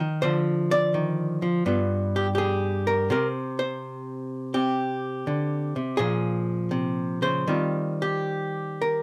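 A lone archtop guitar, miked and amplified, opens this smoky, late-night solo jazz fragment, its dark, clean, hollow-body tone picked and placed up front. The playing moves at 83 BPM in 4/4 with a swung eighth-note feel, yet it breathes in rubato, stretching time freely in C minor. Across its range from G2 to Eb5, the guitar moves through Dm, G7 and Csus2, then shifts at 6.0 seconds to Bbm7 before settling on Eb69 at 7.5 seconds. Close, detailed microphones catch every nuance of the instrument, while a light reverb lends the room a gentle glow. Cut from a longer piece, these nine seconds feel like a quiet, intimate turn through a single section.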